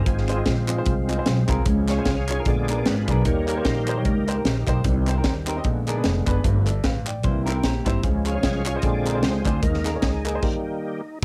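A swung 4/4 groove drives this short, reverent and uplifting cut from an uptempo gospel number, with a crisp fusion drum kit of bright cymbals, high-tuned snare and punchy kick up front beside a woody, growly pizzicato upright bass and close, dry group handclaps. A thick, lightly overdriven tonewheel organ with slow rotary speaker and chorus vibrato takes the lead throughout, over a clear, vintage upright piano accompaniment, while a dark, clean electric guitar with phaser slips in briefly in the background at 7.2 seconds. The band stops at 10.4 seconds, leaving organ and drums to close out a dry home cassette recording that moves through minor and dominant chords before resolving onto a major chord.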